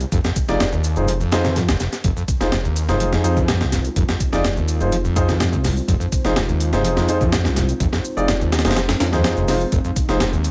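Energetic, funky breakbeat cut from a longer piece, built on a gritty, compressed sampler-style drum kit up front with a thumpy kick and high-tuned snare, an electronic shaker tucked in the background, and a thick, menacing detuned saw bass holding down the low end over a single Fm7 chord. A squelchy, screaming acid line with distortion and lush chorus carries the riff, while a warm concert grand piano plays stabs roughened by vintage 12-bit sampler grit and delay. From 2.8 seconds a dark, moody analog pad with phaser and chorus sits very quietly underneath, all in a dry sound.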